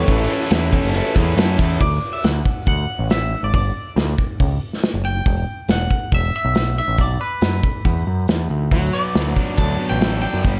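A straight 4/4 groove from a loose indie drum kit with a punchy kick in a small pumping room drives this wistful yet upbeat indie rock excerpt, where a growling overdriven picked bass sits up front beneath a clean, scooped twangy electric guitar melody bathed in plate reverb and tape echo, while a ringing, inharmonic FM bell chimes in the background until 1.3 seconds and a bright, double-tracked fuzz guitar riff appears at the opening and returns at 8.7 seconds.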